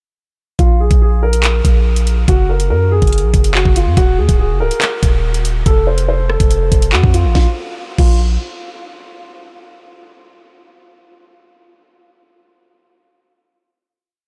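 A dark, boxy grand piano opens this cold, ominous drill piece at 0.6 seconds, its filtered, looping melody repeated like a sampled loop and trailed by a diffuse ambient delay, while a half-time drill beat arrives with it: a knocking kick, a sharp snare, handclaps, rim clicks, crashes and metallic, tape-warm hi-hats skipping through fast rolls. Underneath, a deep, sine-like 808-style bass holds long, decaying sub-bass notes that follow the kick and slide between pitches, sitting up front alongside the drums. After the brief hook, the piece settles onto a final chord at 7.4 seconds within a light digital ambience.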